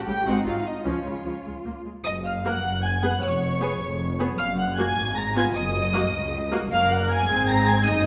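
Muted violins carry the spirited melody with a soft attack and a smooth top, while a second muted violin line sits close and up front in this quick, cheerful classical-period movement for string orchestra at 103 BPM in 6/8, F# major. Lush muted violas supply the accompaniment, and lush muted cellos join a distant double bass section with light vibrato on the bass, every section bowed with a dark, veiled con sordino tone. A reverberant recital-hall space surrounds the ensemble in this passage cut from a longer piece, which moves from its opening section into a new one at 2.1 seconds.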